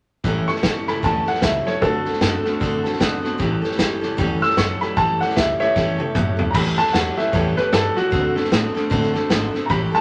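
A clear upright piano carries the melody up front, entering at 0.5 seconds and ringing high over this upbeat, rollicking rockabilly cut with a swung eighth-note feel. Beneath it, a bright, full-bodied dreadnought acoustic guitar picks out the accompaniment close to the listener, its playing marked by audible finger squeak, while an electric guitar through a small old amp plays a twangy, slightly broken-up riff low in its register. A pizzicato upright bass with gut strings sits in the background, thumpy and woody. The vintage drum kit is punchy and up front, with a medium-tuned snare, dark cymbals, a rolled-off top and a pumping small-room sound, and it drives the groove with crash, hi-hat, kick, snare and toms. The harmony moves between A7 and D7, and a drum fill from 5.8 to 6.5 seconds leads into a new section, all set in a moderate large-studio reverb that gives this excerpt a lively, spacious finish.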